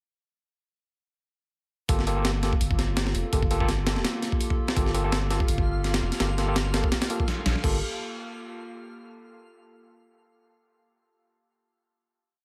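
A drum and bass piece with a jungle feel, this short whole track runs at 167 BPM in G minor with a lightly swung 16th-note groove and an atmospheric yet frenetic mood. At 1.9 seconds the drop arrives on a Gm9 chord, bringing in a heavily chopped, sampler-style breakbeat kit up front, gritty and compressed, with a thumpy kick, medium-tuned snare, hi-hat and crash re-recorded in a large room. A deep, round sub bass plays a dub-style line alongside it, while an overdriven tine electric piano, pushed through a combo amp, fires syncopated chord stabs moving one shape in parallel, trailed by dub echo. Behind them sits a warbling, nostalgic tape-like pad of sustained chords, lo-fi and mellow, coloured by chorus and its own reverb. From 5.4 seconds a twinkling granular texture holds a high note with an octave-up shimmer in the background, before a final chord rings out from 7.6 seconds in a digital ambience.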